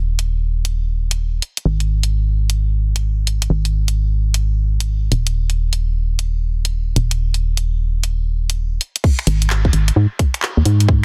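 Swung sixteenths at 130 BPM in 4/4 give this moody, soulful two-step garage excerpt its lilting, skipping gait, with the tuning sitting slightly under standard pitch. A dark, hollow FM bass with an organ-like tone carries the low end from the opening second, its fast attack and decaying notes giving it a percussive bite as it sits up front in the mix. A layered, produced garage drum kit enters at 0.2 seconds, mixed further back, with finger snaps, handclaps, hi-hat and crash cymbal marking out the groove. At 9.0 seconds the track drops into its next section, where a tight electronic kick joins and lands firmly up front. The sound is dry, with little reverb, and the master is dense and heavily limited in a modern style.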